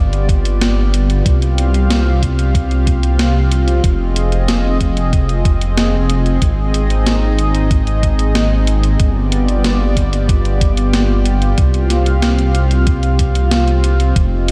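Synthwave with a nostalgic, driving feel, this 14.5-second passage from a longer piece pairs a deep, rumbling detuned saw bass sitting up front with a mellow, chorused analog pad whose sustained chords pump against the sidechain, while a thumpy electronic kick and a gated 80s drum machine of hi-hat and snare with gated reverb sound as if re-recorded in a large room, all moving through G7, Csus4, Fm7 and Ab in a light digital ambience.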